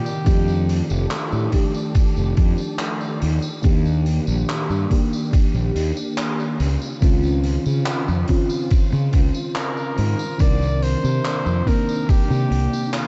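A dark, cassette-worn sound with light reverb and a small-room ambience frames this nostalgic, melancholic vaporwave excerpt at 71 BPM, where a thumpy electronic kick and an overdriven, fuzzy fingered bass sit up front, while a gritty garage kit of handclaps, hi-hat and tambourine pumps in a bright stone room. A mellow FM electric piano with subtle chorus and tape echo carries the harmony through F13, Ebmaj7, Dbmaj9 and Cm9, as a silky, warbling string machine holds sustained chords in the background. A clear flugelhorn with light vibrato and tape echo sounds briefly at the start, then returns with its melody at 9.6 seconds.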